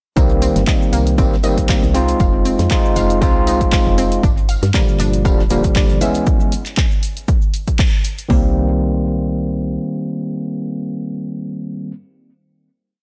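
A gritty, barky tine electric piano sits up front in this hypnotic deep house piece, overdriven through a combo amp and firing syncopated chord stabs that move one shape in parallel, with sidechain pumping and tape echo. Beneath it, a four-on-the-floor house kit with a punchy kick and metallic open hats is overdriven and re-recorded in a large room, layered with a tape-warm analog drum machine's claps and closed and half-open hats and a very quiet, dry looped 70s breakbeat with a fat snare and tambourine. A woody, round FM bass plays a mellow dotted rhythm through tube saturation and pumps with the sidechain, while a detuned sawtooth-and-pulse analog pluck spins a chorused six-step arpeggio in the background that drifts against the bar, also pumping and echoing. A grainy, close cabasa adds hand-played sixteenths, and the swung groove cycles through minor seventh chords, with a band accent at 7.8 seconds. 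The drop gives way at 8.3 seconds to a final chord, where the electric piano rings on until 11.9 seconds in a small room ambience.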